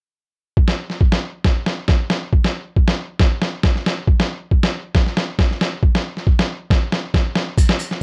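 A lightly reverberant, muffled lo-fi sampler-style drum kit, compressed and pitched down with a thumpy kick and medium-tuned snare placed up front, drives this joyful, danceable highlife excerpt at 137 BPM in 4/4 with a gentle sixteenth-note swing from 0.6 seconds, until distant, grainy maracas in a large room slip in briefly at 7.6 seconds just before the drums stop at 8.0 seconds.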